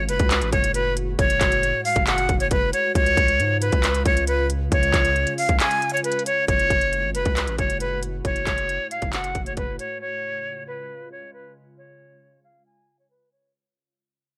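A breathy, up-front jazz flute melody in F# harmonic minor opens over a glassy, chorused FM pad and a deep, sine-like 808 bass, joined at 0.1 s by a hard-clipped electronic trap kit of handclaps, crisp hi-hats and kick at a half-time 136 BPM, building a menacing, dark trap mood in a dry, gritty recording; the kick drops out from 5.6 to 6.5 s, and a filter sweep and fade-out run from 6.5 s while the bass stops at 9.8 s and the drums at 9.9 s, leaving the flute and pad.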